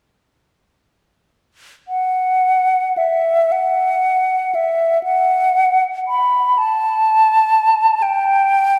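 A mellow, airy silver concert flute plays alone from 1.9 to 8.8 seconds in this yearning, mournful classical fragment, its soft attacks and expressive vibrato moving freely in rubato around a slow 36-42 BPM in 6/8, ranging from E5 to B5, up front within a resonant church reverb that lingers for 3.4 seconds.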